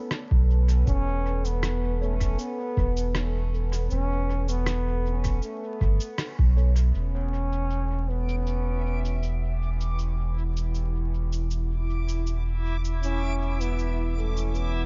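Spacious and hazy, this ambient dub fragment moves at an unhurried 79 BPM in E dorian, cut from a longer piece and set in an echo-heavy digital space with a faint vinyl crackle and a dulled top end. A mellow trombone carries the melody with light vibrato and a vintage, classical-style tone, its phrases trailing off into dub echo, while a deep, moody pad of detuned sawtooth and sine layers holds sustained chords in the background under chorus and reverb. Up front sits a soft, round sub bass with a touch of tube saturation, joined by a sampler-style rim click and cabasa that sound pitched down, muffled and tape-warm, filtered and echoed in a small room. A thumpy, very quiet kick plays only until 6.5 seconds, and between 2.0 and 6.7 seconds a clean tine electric piano adds faint stabs as if through built-in speakers. After a band accent near 6.2 seconds, the harmony shifts from Asus2/E to Emadd9 at 6.9 seconds, a filter sweep settles over the drums, and from 8.3 seconds a reversed, granular, bright swelling texture drifts in with dreamy reverb to the end.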